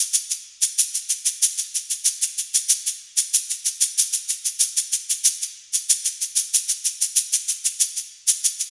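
A grainy, bright egg shaker sits close, dry and up front in a lightly reverberant room, carrying this short anthemic, warm pop clip alone at 94 BPM in a straight 4/4 feel from 0.1 to 8.7 seconds.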